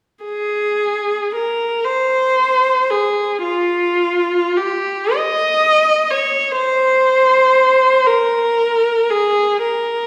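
Serene and lyrical, this short classical passage for unaccompanied viola, cut from a longer piece, unfolds freely in A-flat major. The pulse is slow, around 38 beats per minute counted in dotted quarters within a 6/8 metre, and the beats stretch unevenly with expressive rubato. A single bowed viola plays from 0.2 to 10.1 seconds, staying in a compact middle range between F4 and E-flat 5. Its tone is clear, smooth and even, coloured by vibrato, and it sits up front. Around it, a recital hall's reverb adds a long, wet tail, giving the sense of a listener seated further back in the room.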